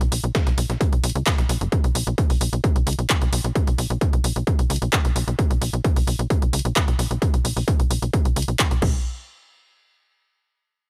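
A straight 4/4 pulse drives this dark, intense stretch of peak-time techno, built on a heavy, layered electronic kick with a tape-warm, small-room weight that sits up front from 0.3 s. A nasal, evolving sequencer bass of sawtooth and square waves plucks with a fast attack and quick decay under sidechain pumping, while a dry, overdriven analog drum machine adds crash cymbal, handclaps and hi-hat, its hats and cymbals also pumping. A gritty, compressed sampler-style kit with a medium-tuned snare and high-passed hats lingers in the background only until 1.6 s, and the whole cut-down passage stays close and nearly free of reverb.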